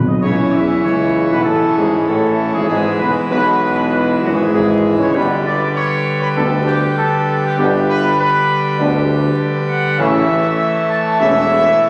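Solemn and majestic, this short cut from a longer classical ceremonial fanfare moves at 98 BPM in a straight 4/4. A warm trumpet section carries the melody up front with light vibrato, sounding distant and roomy, and opens the music alone before the others join at 0.2 seconds. Beneath it, mellow French horn and trombone sections hold tight sustained chords in the background, while a solo tuba supplies the bass with a roomy, distant tone. A full pipe organ stands forward with brilliant mixtures and romantic voicing, sustaining chords that move from A through E/G# and G before returning to A at 10.0 seconds. The whole sits in a wet scoring-stage reverb, and a layer of vinyl crackle adds an aged surface to the sound.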